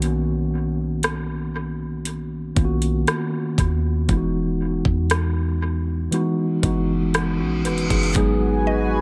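Light reverb and digital ambience give this echo-heavy contemporary R&B excerpt a moody, late-night atmosphere. A mellow tine electric piano sits up front with dub echo, moving through lush chords from Bmaj9 to Emaj9 and F#13sus4 before arriving on G#m7. Beneath it, a clean 808-style bass is deep, boomy and dark, its sine tone striking quickly and then decaying. The smooth R&B drum kit is electronic and produced, with a knocking kick, metallic hi-hats and rim clicks placed prominently and also treated with dub echo, and it stops at 8.4 s. An electronic reverse cymbal appears at 7.3 s. In the closing moments a shimmering, retro pulse-width pad with chorus, detuned sawtooth and square layers and a slow attack comes in, joined briefly by a woody, round mallet-like synth pluck, also chorused, just as the passage is cut off.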